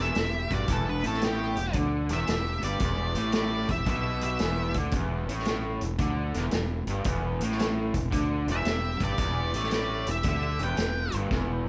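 Smoky and heavy, this swung blues rock and southern rock power-trio excerpt sets a raw, lo-fi double-tracked garage guitar riff over growly, punchy fuzz bass and a vintage drum kit with a punchy kick and rolled-off top, while a dark octave-fuzz lead guitar carries the melody up front and a very quiet bluesy overdriven lead guitar traces a second line beneath it, both dropping out between 4.7 and 8.5 seconds before a drum fill at 11.3 seconds, all captured as a band playing live in one room with a large studio reverb.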